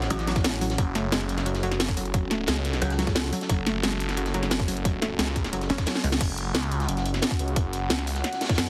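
Driving straight 4/4 at 177 BPM, an overdriven electronic kick enters at 0.4 s, tight and up front, layered with an overdriven drum and bass kit of cracking snare, bright hi-hats and crash cymbal, while a crunchy breakbeat kit sits behind them with a gritty, rolled-off small-room snare and hats. This dark, aggressive slice of technical drum and bass in F# minor, cut from a longer piece, rides a swirling, thick detuned saw bass, phased and tube-saturated, that pumps against the kick from the start until 8.2 s. A heavy, pulsing pluck wobble bass with chorus cuts in for short bursts, up front and saturated, between F#1 and F#2. Above, a round, full-bodied analog pluck plays arpeggios through chorus and dub echo until 6.2 s, and a deep, moody analog pad holds sustained chords in the background, its slow attack colored by chorus and phaser. A drum fill near 5.9 s leads into a repeat of the drop, all under light digital reverb and a heavily compressed, radio-like master.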